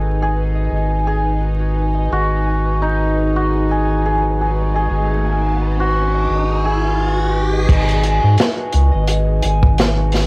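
A dark, melancholic trip hop excerpt at 86 BPM in G# minor opens on a G#m7 chord, with a shimmering, hammered cimbalom melody roughened by vintage 12-bit sampler grit, cassette tape and dub echo. Alongside it, a fingerpicked concert harp plays ringing arpeggios through a low-pass filter with the same tape and echo treatment. A round, deep analog bass with transformer saturation sits up front, while a tense, detuned, string-like drone with vibrato and built-in reverb hovers in the background. An electronic riser runs from 4.2 to 7.7 seconds, and at 7.7 seconds a crunchy, gritty breakbeat kit arrives with a tight kick, medium-tuned snare, hi-hat and dark crash cymbal, swung on the sixteenths and heavy with tape saturation. The whole home cassette recording is dry and overlaid with vinyl crackle.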